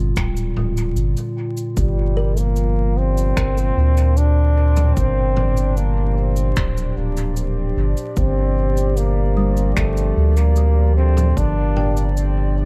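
A straight 4/4 pulse begins at 0.2 s, carried by a deep, overdriven electronic kick in the background and an acoustic big-band drum kit of cabasa, finger snaps and toms trailed by dub echo, above a round, soft sub bass that sits up front with tube saturation. A warbling, lo-fi, tape-like pad holds dark, nostalgic chords with chorus and reverb, while a woody, ringing kalimba plays arpeggios through tape echo in the background. At 1.8 s a vintage trombone enters with a solo melody in a classical style with light vibrato, giving this meditative ambient dub fragment a deep atmosphere flecked with vinyl crackle.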